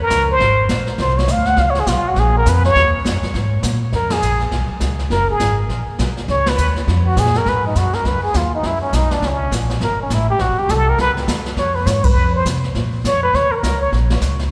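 The plunger-muted trumpet leads this short, playful stretch of small-group swing and bop, its breathy, wah-wah tone marked by scooped notes and a light vibrato as it carries the melody up front. It takes a solo turn for the first 3.9 seconds with bass and brushes underneath, the group moving in a relaxed swing at 204 BPM in Db mixolydian over changes such as Abadd9, Db7, Gbadd9 and Db9. Pizzicato upright bass sits close and woody, its thumpy steel strings giving a solid bottom, while the brush kit stays lower in the mix with dark cymbals, a medium-tuned snare and a boomy kick. Band accents punctuate the second section at 4.1, 6.4 and 12.0 seconds, and the trumpet drops out at 13.9 seconds as bass and drums carry on briefly. A lush church reverb with a long tail surrounds the group, lending the lively small-band sound a spacious, echoing glow.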